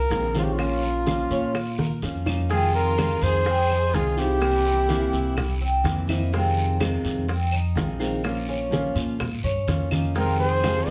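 Heard from a little further back in a wet studio room, this sultry, nostalgic slice of Cuban son and guajira, cut from a longer piece, opens with a veiled, bucket-muted trumpet singing a vibrato-laden jazz melody up front that pauses at 5.6 seconds and returns at 10.2 seconds. Beneath it a woody, thumpy gut-string upright bass plucks the bass line, a bright, metallic Cuban tres picks arpeggios on doubled strings, and a fingerpicked nylon-string guitar adds classical accompaniment, while a focused, clear violin section bows a second line from 2.5 seconds. Tight high-tuned bongos, thin-skinned congas and vintage claves sit in the background, with a raspy guiro close and dry, in a straight four-beat groove moving through Fm7, Bbm and C7.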